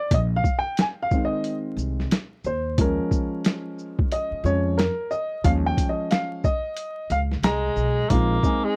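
A swung 90 BPM jazz-hop groove in 4/4 rides on a muffled, pitched-down sampler-style drum kit, with thumpy kick, medium-tuned snare, hi-hat and shaker, all compressed and overdriven, while a growly, woody pizzicato upright bass sits up front. Over the relaxed, smooth changes from Bb9sus4 to Eb9sus4, a dark, mellow upright piano carries a solo passage from the start until 8.1 s. A breathy, whispered tenor saxophone with vibrato and scooped notes slips in at 7.4 s, all within a close, dry 1970s-style small-room sound dusted with vinyl crackle, in this brief cut from a longer piece.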